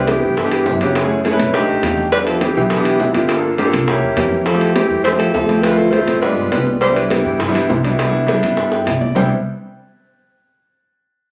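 Captured on a phone in the room, with club reverb, light reverb and compression, this sunny, sophisticated Afro-Cuban jazz excerpt moves at 205 BPM in C major, as a mellow, vibrato-laced alto saxophone carries the melody through plate reverb over a gritty, growling tenor second line, a woody, thumpy pizzicato upright bass, and a clear, up-front concert grand piano whose action noise is audible and whose fills land at 1.5 and 8.6 seconds, while bright high-tuned congas, tight, very quiet bongos and ringing timbales sit behind, and a drum fill arrives at 8.7 seconds.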